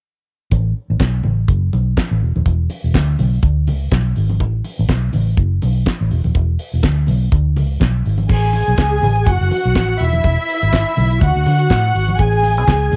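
A disco groove at 123 BPM in 4/4, with a light swing on the sixteenths, drives this celebratory, danceable cut from a longer piece in A major. Up front, a damped 70s drum kit with a tight kick, fat snare, hi-hat, handclaps and crash cymbal sits beside a dark, round, foam-muted fingered electric bass that reaches down to D#1. Congas with a thick, medium-tuned skin sound compressed and saturated in the background. The chords cycle through Asus2, F#m, E5 and G#dim until a dark, woody string section with vibrato and a smooth top enters at 8.3 seconds, bowing a lush ensemble line over Amaj7, F#m, E and D. The dry room and cassette-tape grit on the drums and strings give the whole a close, homespun character.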